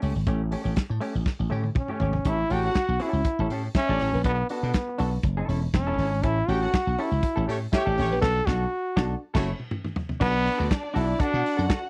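A brilliant, forceful trombone carries the melody with scooped notes and light vibrato from 1.8 seconds in this danceable, sultry disco excerpt, riding over punchy slap bass, a muffled, dry soul drum kit with dark cymbals and drum fills, and a clean semi-hollow electric guitar with a warbly pitch drift, while a lush, woody string section enters in the background at 2.5 seconds and a distant, roomy horn section adds octave-doubled stabs around 7.5 seconds, all in a close 1970s-style studio sound.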